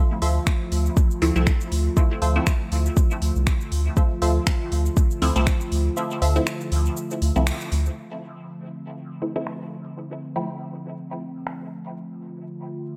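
This dub techno excerpt moves at 120 BPM in 4/4 with a light 16th-note swing, settling into a deep, meditative mood in D minor on a Dm7 chord. A warbling, nostalgic pad with a slow attack and long release holds sustained chords from the start to 13.0 seconds, its lo-fi, dark tone thickened by chorus and its own reverb and breathing with sidechain pumping. A crisp, digital wavetable chord stab plays a short riff above it until 6.4 seconds, colored by cassette-tape grit and dub echo, while a muted, resonant filtered dub chord stab with phaser and dub echo enters at 1.2 seconds and carries on into the second half. Underneath, a soft, round sub bass sits up front, and a deep electronic kick anchors the groove until 5.6 seconds, staying out from 6.0 to 8.0 seconds, with the full band landing an accent at 7.5 seconds. A deep house kit of finger snaps, smooth hats and shaker runs through low-pass filters nearly to the end, all set in a light digital ambience.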